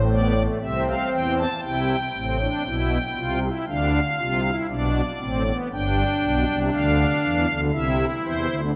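A pipe organ, played on its soft, shimmering strings celeste stops with a romantic voicing, sits up front in this serious, solemn baroque-style three-part fugue, ranging from G1 to A5 at an unhurried pace. The excerpt, cut from a longer piece, moves into a new section at 1.6 seconds and plays until 8.7 seconds, bathed in a wet concert hall reverb with a 2.4-second decay.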